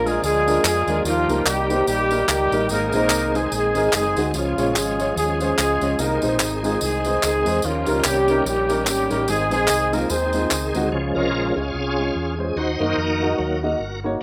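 Uptempo gospel in Db major at 146 BPM with a swung, jubilant and uplifting feel, where an up-front horn section with light vibrato and octave doubling carries the melody over a mellow, dark baby grand piano, a round, punchy fingered electric bass, close, dry tambourine and group handclaps, and a bright, shouting tonewheel organ with key click and slow rotary speaker sustaining chords, until the percussion drops out at 10.8 seconds and the horns at 10.9 seconds, and the organ takes a solo through 14.2 seconds, all in a rough home-demo mix with wet studio reverb.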